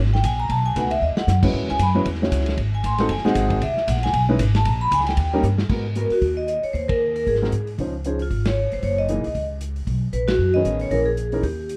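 A ringing, metallic vibraphone with medium hard mallets and slow motor vibrato leads this moody, swinging small-group jazz excerpt at a brisk 230 BPM in G# minor, soloing in a boxy small room through the first 5.7 seconds. Up front beside it, a woody pizzicato upright bass anchors the changes, and an intimate baby grand piano with audible action noise comps from 0.8 seconds. A lo-fi, muffled vintage kit with dark cymbals and a punchy kick adds drum fills, band accents punctuate the later passage over chords such as G#m9 and C#maj9, and light reverb gives the group a little space.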